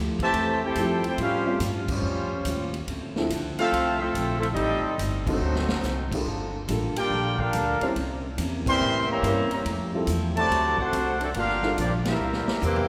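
Brassy and joyful, this big band swing excerpt moves at 142 BPM in 4/4 with a swing feel on the eighth notes, cut from a longer piece and bathed in the long, wet reverb of a church or concert hall. A mellow, distant trumpet section carries the melody from 0.2 seconds, supported by a clear trombone section on a second line, while a woody, thumpy upright bass played pizzicato anchors the low end. A swinging drum kit with a punchy kick, medium-tuned snare, hi-hat, ride, crash and toms drives the groove, with band accents punctuating the passage and drum fills, including one from 12.2 to 12.9 seconds. In the background, a bright, full-bodied picked acoustic guitar and a dark upright piano with short sustain fill in the harmony, which moves through rich chords such as Fmaj9, A7alt, Dm9 and D7b9 before settling onto C7. At 12.6 seconds a clear saxophone section with vibrato steps up front for the closing moment.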